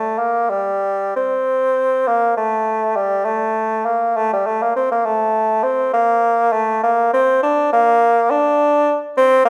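This classical fragment is a baroque-style fantasia for unaccompanied bassoon in B-flat major, flowing and radiant in mood. It moves in 12/8 at roughly 60-70 BPM in dotted quarters, with a rubato feel that lets the phrases breathe freely. The bassoon plays alone from start to finish across the 9.5 seconds, staying within a compact span from G3 to D4. Its tone is clear and up front, shaded by a light vibrato in a poised classical style. A moderate recital hall reverb with a 1.3-second decay surrounds the instrument, giving it a natural sense of space.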